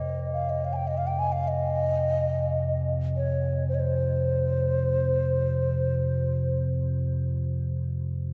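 An airy, close-miked low xiao carries an expressive, vibrato-tinged melody up front over a deep, ominous rumbling drone with lush chorus, while a faint, metallic tubular bell rings solemnly in the background until 5.3 seconds, all suspended in free time within a vast, echoing cathedral space for a meditative, spacious world-music moment cut from a longer piece.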